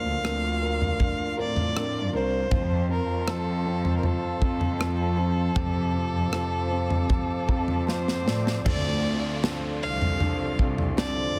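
A dense, heavily limited modern master with light small-room ambience carries this hopeful, emotional pop ballad excerpt in a straight 4/4. A smooth, dark bowed violin with vibrato sings the melody over a mellow baby grand piano in the background, a soft, flute-like tonewheel organ holding chords through a fast rotary speaker with audible key click, very quiet fingerpicked flamenco guitar arpeggios, and a rich, floating symphonic cello section on the bass. An up-front studio drum kit with bright cymbals, a tight kick and a softly clipped snare anchors the song, with a piano fill from 7.1 s, a drum fill from 7.9 s, and an electronic swell and downlifter entering in the background at 8.0 s, ahead of the harmony's move to Dm7 at 8.7 s.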